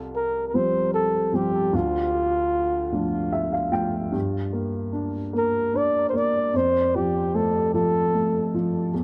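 A dark, woody upright piano with audible action noise opens this heartfelt, nostalgic acoustic folk-pop ballad in F major, moving at a slow 50 BPM in 6/8 through Csus4, Dm, Gm and F, while a breathy, jazz-style flugelhorn enters at 0.2 seconds to carry the solo melody up front with vibrato, scooped notes, a smooth top and tape echo, all set in a light reverb for an intimate, mellow feel in this short cut from a longer piece.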